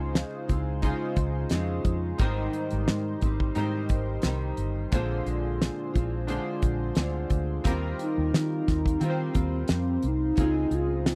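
Over a lightly swung 88 BPM groove in 4/4, a damped 70s drum kit with a fat snare and tight kick sits up front beside a dark, foam-muted fingered electric bass, round and punchy, in this nostalgic, laid-back bedroom-pop excerpt in Eb major. A small, fingerpicked nylon-string guitar with lush chorus and warbly pitch drift plays alongside glossy, detuned retro synth keys carrying a cassette-tape character, moving through Dbmaj7, Abmaj7 and Bb9 to Eb69 before returning to Dbmaj7. At 8.0 seconds a mellow bass ocarina enters with the melody, clay-toned and expressive with vibrato, subtle chorus and slapback echo, all within a dry, close 1970s-style studio sound.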